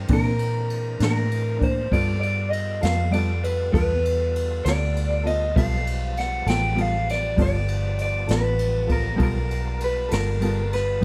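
A laid-back, swaggering slow blues in 12/8 at 66 BPM opens with a tonewheel organ holding sustained chords through a slow rotary speaker and light overdrive, its thick tone carrying a touch of key click, over a round, foam-muted fingered electric bass that sits up front. At 0.1 seconds the rest of the band arrives. An electric guitar through a small old amp carries the melody in a slightly broken-up, lo-fi voice under a lush chorus. A clean, mellow second electric guitar plays fingered accompaniment with tremolo. A brushed jazz kit of kick, snare and ride sounds natural and small-roomed, with dark cymbals, a high-tuned snare and a punchy kick. The harmony moves from C9 to G9 in this short cut from a longer piece, and the dry, dark production keeps the organ low beneath the lead guitar and bass.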